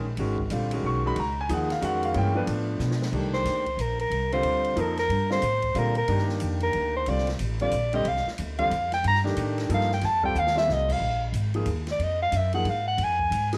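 Spiritual and cool, this modal jazz excerpt swings in a three-beat metre. A grand piano with an intimate, long-sustaining tone and audible action noise accompanies from the opening. Beside it, a woody, growly pizzicato upright bass plays with steel-string thump, while an acoustic drum kit with dark cymbals and a boomy kick joins at 0.2 seconds in a small-room sound. After a brief drum fill, a dark soprano saxophone enters at 3.3 seconds for a vibrato-laden solo that sounds distant and roomy yet sits up front. Suspended and ninth chords such as Db9sus4, G9, C9sus4 and F9 carry the harmony, and a second drum fill comes shortly before the move to Bb7sus4, all within a light studio reverb.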